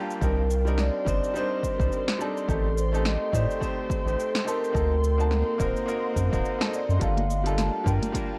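A mellow vibraphone played with soft mallets carries the melody from 0.2 seconds, its metallic, ringing tone echoed by digital delay and set in a boxy small room. This relaxed sunset chillout piece is cut from a longer work, with a loose swung sixteenth-note feel. A bright, brilliant grand piano supplies accompaniment, also touched by delay, while an ethereal, airy pad holds sustained chords through ensemble chorus and its own reverb, moving through Cm9, Am7b5, D7b9b13 and Gm9. Underneath, a round analog bass sits up front with a deep, dark sustain, joined by a punchy electronic kick and a deep house kit of layered snare, smooth hi-hats and shaker. A very quiet downlifter sweeps in at the opening, and bright, dry congas appear in the background near the close at 7.2 seconds, while light reverb and a worn, warbling cassette-tape pitch drift lend the whole mix a warm haze.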